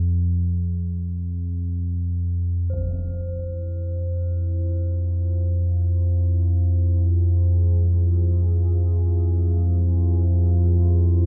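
A deep, rumbling drone sits up front and holds throughout this desolate, unsettling dark ambient passage, its detuned, wave-folded tone washed in lush chorus and its own reverb. Alongside it, a bronze singing bowl rings faintly the whole way through, metallic and meditative with a slow beating and a vintage, band-limited character. At 2.7 seconds a huge, dark impact lands in the background, muffled by a low-pass filter, marking the shift into the piece's second section. From 3.5 seconds a moody pad enters with sustained chords, its slow attack and long release blurred by chorus and reverb into a hazy layer above the drone. The whole scene hangs in the long tail of a cathedral-like space, adding to the ominous, suspended feel of this fragment cut from a longer work.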